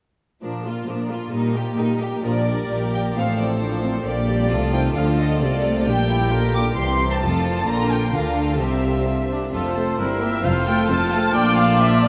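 A dark, woody first violin section carries the melody with vibrato, leading a graceful, lively classical-period orchestral movement at a quick 132 BPM in 2/4 that moves from Bb major to F major. A pure, floating second violin line, intimate sul tasto violas and close cellos fill out the strings, and a rich, smooth double bass section joins at 2.2 s. At 9.5 s, a mellow, hollow flute group, a vintage-toned cor anglais and a distant clarinet add second lines, all bathed in the long, echoing reverb of a vast cathedral.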